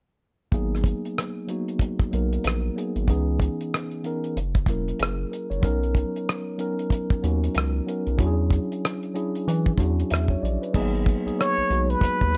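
A late-night, smooth neo-soul and R&B groove opens with a mellow tine electric piano, a round, deep analog bass and a damped 70s drum kit of dark cymbals, hi-hat, tight kick and rim click, all sitting close and dry over swung sixteenths and lush chords from G#m9 through C#m9, F#7 and Bmaj9 to E13. The whole fragment carries the worn, warbling pitch drift of old cassette tape, with little reverb. Shortly after the G#m9 returns, a breathy, plunger-muted trumpet steps forward at 11.4 s for a brief jazz solo, with wah-wah colour, light vibrato and scooped notes.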